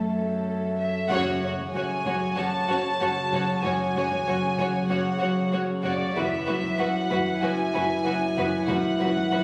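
A floating violin section opens this mysterious, ominous suspense cue, bowed sul tasto with a soft attack and carrying the melody up front. Beneath it sit a very quiet, dark viola section with lush vibrato, a glass harmonica holding ethereal, slow-attack chords with audible beating, and a cello section carrying the bass in the background. At 1.1 seconds the band lands on an accent as a second violin line joins, a mellow French horn section adds sustained chords with light vibrato, and a bright, ringing Celtic harp picks out a very quiet riff. A woody double bass section deepens the bottom very quietly, while a taiko ensemble struck with hard sticks stays in the background. The harmony settles on a minor chord, then shifts to an added-ninth chord over the same bass at 6.2 seconds, all framed by the moderate reverb of a scoring stage yet carrying the compressed, room-captured sound of a phone recording, cut from a longer piece.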